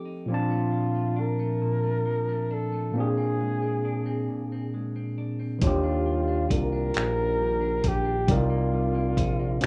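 Late-night and sultry, this slow six-eight R&B excerpt at 45 BPM opens with a barky, overdriven tine electric piano and a clean semi-hollow electric guitar under a mellow flugelhorn melody with vibrato and scooped notes, all three bathed in plate reverb, before a smooth, nasal synth bass and a gritty, sampler-style soul drum kit of finger snaps, hi-hat and thumpy kick arrive at 5.6 seconds, moving from Bbmaj7 through Bb9 and Ebmaj9 to Cm7 with the rough feel of a home demo in a small room.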